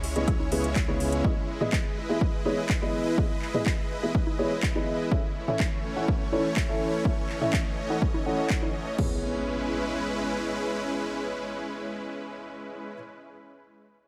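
Driving and expansive, this progressive house excerpt opens on a lush, detuned supersaw pad holding sustained chords beside a round analog bass that sounds only for the first 1.2 seconds, both pumping under sidechain. A soft, felt-muted upright piano with audible action noise plays filtered stabs through digital delay, swept by a filter until 9.0 seconds, while a punchy, overdriven kick sits up front with a house kit of metallic hats, handclaps and crash, and background woodblock, congas and toms fill out the groove. Drums drop away at 9.1 seconds as a distant impact arrives and rings on beneath pad and piano in light reverb, while the chords return to C#m7.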